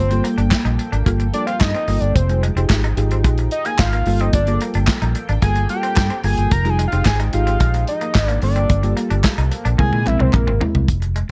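A dry, close recording carries this late-night, danceable early-eighties boogie funk excerpt at 110 BPM in F dorian, where a fat, nasal analog synth lead with vibrato solos over a round, foam-muted fingered electric bass, a punchy, up-front studio drum kit, a mellow FM electric piano treated with chorus and phaser, a clean picked electric guitar riff bathed in lush chorus, a shimmering pulse-width pad in the background, and very quiet crisp group handclaps, as Gm9 and Fm9 chords alternate before C7b13 arrives at 9.8 seconds alongside a drum fill.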